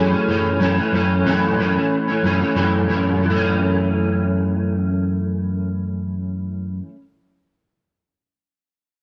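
A reedy, clean electric piano sits in the background through its built-in speakers, heard only for the first 0.6 s alongside a dark, slightly broken-up picked electric guitar up front on an F#m7 chord. This lonely, hazy indie pop excerpt in F# minor moves at 92 BPM in 4/4 with a light 16th-note swing. The guitar carries on to 7.0 s through ensemble chorus and warbly pitch drift, with a change of section at 3.2 s, all set in a small room with light reverb and a cassette-tape sheen.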